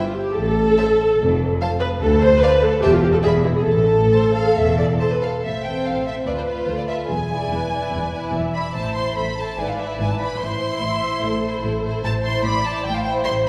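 A quick, spirited and cheerful classical-period movement for string orchestra in A minor at 145 BPM, played with rubato, where a clear, focused violin section carries the melody over a lush second violin line, an up-front viola section adds expressive portamento, and smooth cellos and double basses enter at 0.4 seconds, all set back in a wet scoring-stage reverb in this brief excerpt cut from a longer piece.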